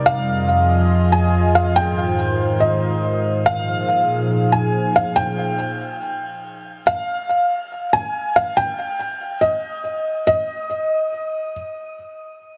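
A hazy, spacious hip hop excerpt in a half-time feel, where a warbly, detuned tape-like pad with chorus and phaser holds sustained chords through Fm7, Abmaj9 and Bb7sus4 until 5.1 seconds, while a soft felt-muted upright piano with audible action noise and digital delay carries an intimate high melody to 11.5 seconds, all wrapped in light digital ambience and a heavily compressed, radio-like sound.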